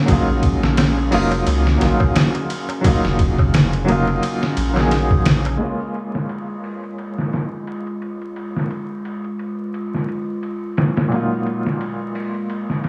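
Melancholic and smoky, this trip hop excerpt moves at 87 BPM in Bb minor with a swung sixteenth-note feel, drifting from Ebmadd9 to Bbm7 and back to Ebmadd9 over Bb. A woody, polished upright piano sits up front, its chords colored by tremolo and tape echo, while a warbling, nostalgic pad holds sustained chords underneath with chorus and gritty 12-bit sampler character. The sampler-style drum kit is compressed, pitched down and muffled by low-pass filtering, with a thumpy kick, medium-tuned snare, hi-hat and ride carrying the air of a large room. For the first 5.6 seconds, a round, deep analog bass with tube saturation, a crisp metal-shelled darbuka played with soft hands in the background, and a very quiet, breathy wind-like noise layer fill out the texture. After 5.6 seconds those three drop away, leaving piano, pad and drums over vinyl crackle and small-room ambience.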